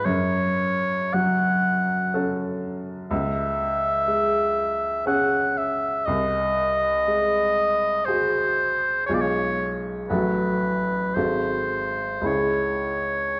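Romantic classical duo in a slow, rubato triple metre, elegiac and solemn, in which a smooth, warm oboe sings the melody up front while a bright baby grand piano plays accompaniment throughout this short passage cut from a longer piece. The piano's brilliant, open tone sits close beside the oboe. A lush concert hall reverb and dark production lend the minor-key harmony, which settles through a dominant chord back to its home chord at 12.3 seconds, a grave, spacious glow.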